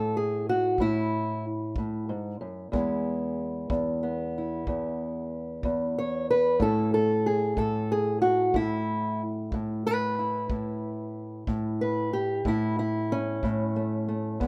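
A fingerpicked old ladder-braced acoustic guitar carries the melody up front, its dark, woody, boxy tone and old strings giving this laid-back, gritty acoustic country blues a worn character as it moves from A5 to E and back to A in 12/8. A tight, natural kick drum played with brushes enters at 0.8 seconds and sits well beneath the guitar. Light small-room reverb and a rough home-demo mix give this passage, cut from a longer piece, an intimate feel.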